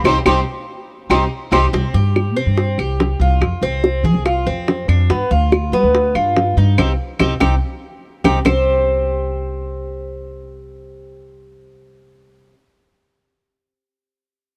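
Warm and nostalgic, this Cuban son and guajira passage comes through worn, warbling cassette tape with light reverb: a pure, expressive flute melody and a distant, bowed chamber violin section sound together only until 1.7 s, while an up-front, metallic tres picks double-strung arpeggios over a thumpy pizzicato upright bass through 12.5 s, and round, low-tuned bongos and woody background claves play until 8.6 s.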